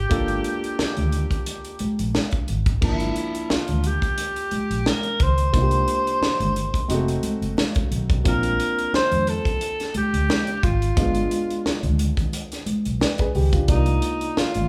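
A live band in one large room, moderately bathed in studio reverb, plays this smooth, silky slice of lush 1970s-style soul at 88 BPM with a gentle swing on the sixteenths. Up front, a breathy, whispered alto saxophone carries the jazz-style melody with a soft attack and light vibrato, over a natural-sounding grand piano, a dark, round, foam-muted electric bass with a punchy amped tone, and a tight funk drum kit with a high-tuned snare, snug kick, hi-hat and crash. Thick-skinned congas played with hard hands sit warm and dry in the background as the harmony moves from Gm9 through Bbmaj9 at 8.3 seconds to Cm11 at 13.7 seconds in this short cut from a longer piece.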